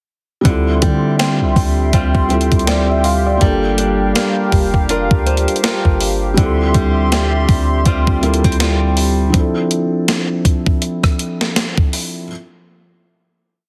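Opening at 0.4 seconds with a felt-muted upright piano's soft, dark held chords, a hollow, flute-like pad and a fingerpicked flamenco guitar with delay, this moody, late-night contemporary R&B piece in D minor at 81 BPM settles into a swung groove as a gated 80s drum machine with a thumpy kick and gated reverb snare and a deep, boomy 808-style bass with pitch slides arrive at 0.5 seconds, while a faint FM bell scatters notes in the background. The pad and bass stop at 9.3 seconds, the guitar follows at 9.9 seconds, and the piano, backed by the drums, carries the Dm11-to-Gm7 harmony to a Dm9 close, all under heavily compressed, radio-style sound with little reverb.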